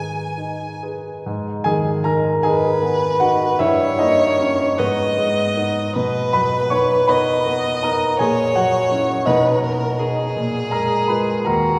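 In a rubato 6/8 lilt at roughly 44-57 BPM in dotted quarters, this solemn, melancholic romantic classical excerpt in G# minor pairs a focused, vibrato-rich bowed violin melody with a polished, short-sustain baby grand piano accompaniment, both up front throughout its 11.8 seconds, heard from further back within a long, wet church reverb as the harmony moves from G#m through B and F#7/A# before settling on A#5.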